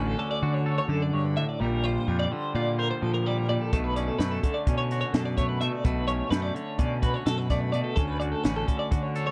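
The fuzz-drenched picked electric bass stands out up front, punchy and overdriven beneath a bright, clean twangy electric guitar and a compressed twelve-string electric guitar whose tremolo-shimmered arpeggios ring high over chords moving from Dmaj7 through Bb69 and Bm9 back to Dmaj7. This intricate, wistful math rock and Midwest emo excerpt runs at 254 BPM in 9/8 with a straight feel, and a compact cocktail drum kit enters at 3.7 seconds with a high-tuned snare, punchy kick and hi-hat. The sound is dry and close, like a 1970s-style studio recording.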